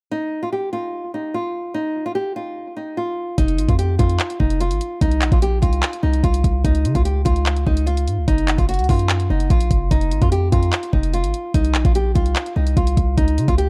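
A half-time trap groove at 147 BPM in 4/4 arrives at 3.4 seconds, when the trap drum kit's knocking kick, bright hats and handclaps, roughened with vintage 12-bit sampler grit, enter together with a deep, boomy 808-style bass with a fast attack and a decaying sine tone. Before that, a small, fingerpicked nylon-string guitar with fresh strings carries the melody alone from 0.1 seconds, its notes trailed by analog delay, and once the groove is underway the harmony moves through Bbsus24, Db and Gb. This eerie, menacing hip hop excerpt has little reverb but an echo-heavy mix, with all three parts placed up front.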